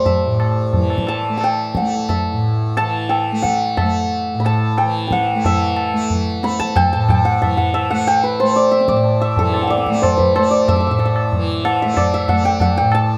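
In a straight four-beat pulse that gradually speeds up, this short passage from a longer Hindustani classical performance in raga kafi carries a solemn, longing mood. The mellow, shimmering hammered santur leads the melody up front with plate reverb, over a bright, buzzing, softly plucked tanpura drone and low-tuned, ringing tabla heard in a live room. The music shifts into a new section at 5.4 seconds, all within a modest small-room ambience.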